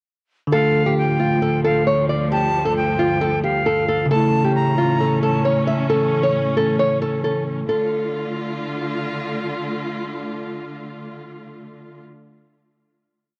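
A fingerpicked nylon-string guitar sits small and up front with a dark, looping melody, finger squeaks audible, leading this short, melancholic trap-inflected hip hop piece at 134 BPM in a half-time feel, in D harmonic minor over a Dm to A and back to Dm progression. Around it, a bell-like tine electric piano repeats held, open-voiced chords with subtle chorus, an airy, reedy jazz flute adds a sparse counter-melody through tape echo until 5.4 s, and a lush bowed symphonic string section sustains a pad. After the breakdown, the strings hold the final chord from 7.7 s while the guitar's melody continues until 9.0 s, all within a dry, gritty cassette-tape sound with light small-room reverb.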